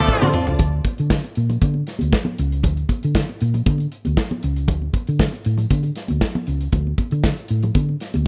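A straight 4/4 disco groove, sultry and danceable, opens with a drum fill on a polished, airy acoustic kit with a tight kick. Over a Dm7 chord, a lush bowed violin section, a barky, lightly overdriven reed electric piano with fast tremolo, and a twangy, clean picked electric guitar all sound only briefly, within the first 0.6 seconds. Throughout, the dark, round hollow-body fingered bass sits up front with the drums, backed by bright, high-tuned congas, carrying this cut from a longer piece to a D5 chord at 4.7 seconds.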